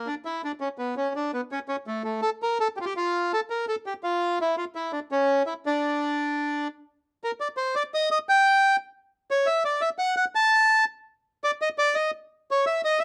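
Passionate and dramatic, this short tango excerpt is carried by a single solo bandoneon, its reedy, dark tone sitting up front with a mid-forward presence in light reverb. The playing is rubato in 3/4 around 170 BPM, tuned to A4 = 439 Hz and ranging from A3 to A5. It opens in D harmonic minor and moves to G harmonic minor at 6.9 seconds, running through to 13.0 seconds.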